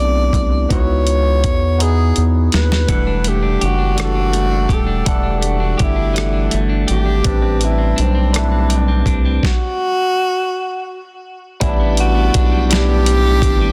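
The recording has a digital ambience and a dense, heavily limited modern master, and it opens partway through a longer piece of slow, sultry, late-night R&B in a six-eight lilt. A breathy tenor saxophone carries the melody with a mellow subtone, vibrato and scooped notes in a jazz-style solo, colored by digital delay. Beneath it a barky tine electric piano through a combo amp comps with a phaser, while a rubbery, hollow square-wave bass sits dark and up front with a resonant filter pluck. A dusty sampler-style drum kit with a thumpy kick, gritty overdrive and rim clicks comes in at 0.3 seconds, plays a fill before a clean, picked electric guitar with spring reverb joins at 2.9 seconds, and then drops out for a stop. At 11.6 seconds the harmony moves to a suspended chord as a piping tonewheel organ enters in the background, lightly overdriven with chorus vibrato and a slow rotary speaker.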